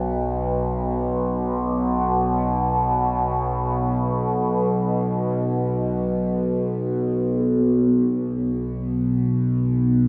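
Ominous and desolate, this short ambient fragment is carried by a single overtone-sweeping drone, a resonant blend of sawtooth and sine with moving overtones that swells in slowly and sustains low in the register, sitting up front. Chorus, phaser and its own built-in reverb colour the drone, while dub echo and a wet spring reverb surround it in an echo-heavy mix. The piece shifts into a new section at 7.4 seconds, and the drone, shaped with a long release, holds until the excerpt is cut at 10.1 seconds.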